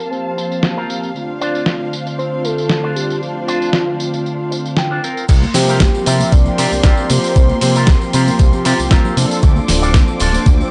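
Nu-disco with a sensual, cosmic mood, this cut from a longer piece opens on a soft, round octave-layered synth lead carrying the melody over detuned synth brass, a distant, woody violin section pumping on sustained chords, a twangy envelope-filtered guitar riff, and a gritty, tape-warm sampler-style soul drum kit. A clean electric guitar fill at 4.3 seconds leads into a drop at 5.3 seconds, where a fat, evolving sawtooth bass, an up-front thumpy electronic kick, and bright tambourine and congas in the background enter. The sound is dry, with chorus and tape echo on the lead, brass and guitar, and filtered, dusty drums.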